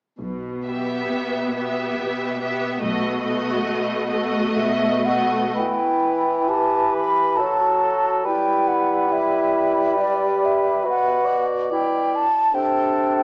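Moving in a slow, rubato 3/4 at roughly 57-73 BPM, this excerpt from a solemn, elegiac romantic orchestral movement in E minor opens with bowed strings: a smooth, vibrato-rich violin melody over a darker second violin line with portamento, lush distant violas, woody cellos and a background double bass that drops out at 3.5 s. At 4.6 s an airy, hollow flute comes up front, and from about 5.6 s the strings yield to a woodwind passage where flute, a dark, roomy cor anglais, a clear clarinet and a soft-attacked, mellow bassoon carry the lines over chords moving from E minor toward B minor. The whole sits in a reverberant recital-hall ambience with a small-speaker character.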